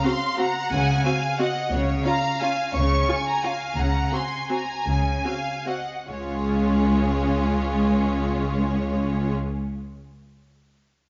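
A clear, distant violin section opens this sweeping, festive orchestral ballroom waltz in Db major, singing the melody with intense vibrato over a smooth second violin line and a focused viola accompaniment. Cello and double bass sections enter at 0.7 seconds, the cellos rich and the basses even, grounding the 3/4 lilt as the rubato tempo, ranging from 137 to 192 BPM, slows between 3.3 and 6.1 seconds. The lush bowed strings sit in a reverberant scoring-stage space with a rounded, softened top end, and the passage is cut from a longer piece.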